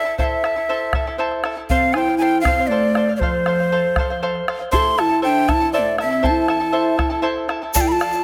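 A breathy, chiffy large quena carries the melody from the first second, its reedy, crisp-attacked tone sitting up front in this short, festive yet wistful Andean folk fragment cut from a longer piece, moving in a steady, straight 6/8. Beneath it, a charango adds shimmering double-string accompaniment, while a deep, dark bombo, close and dry, marks the pulse. At 1.7 seconds a round, soft sine lead enters as a second line, mellow and sustained with chorus, vibrato and gliding portamento. Just before the cut, at 7.7 seconds, a grainy tube shaker joins as the harmony turns to D minor. The parts share a moderate stage reverb, and the close, detailed miking keeps the quena and the sine lead vivid and present.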